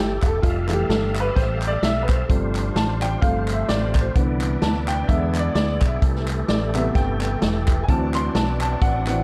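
A woody, slightly detuned upright piano leads this short uptempo gospel passage at 129 BPM, its vintage tone and long sustain carrying a soulful, reverent solo across the full 9.2 seconds. A tonewheel organ holds sustained chords beneath it through a fast rotary speaker with chorus vibrato and audible key click, while a lush, bowed studio string section sits in the background with a focused, smooth top. A round, punchy fingered electric bass stays up front, and a swinging big-band drum kit with a medium-tuned snare and natural studio-room sound joins at 0.2 seconds alongside crisp group handclaps from a small room. The swung eighths give the 4/4 groove a relaxed lilt as the harmony moves from Fmaj9 through G7sus4 and G9sus4 to Cmaj9, then E7, Am7 and D9. Light reverb and a dark production wrap the whole band, and the passage is cut from a longer piece.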